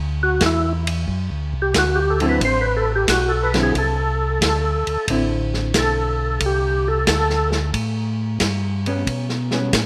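A swung 4/4 groove drives this bluesy, soulful soul jazz organ trio excerpt, with a tight, mid-forward acoustic drum kit of kick, snare, hi-hat and ride sitting up front under a dark, round tonewheel organ bass line that carries key click and a slow rotary speaker. A second tonewheel organ takes the solo melody, full-bodied and lightly overdriven with second-harmonic percussion, chorus vibrato and slow rotary, while a clean, fingered hollow-body electric guitar enters at 2.2 seconds to comp in a shadowy tone. The harmony rests on D7sus2 before moving to A9 at 7.7 seconds, all set in a moderate studio room reverb within a rough home demo mix.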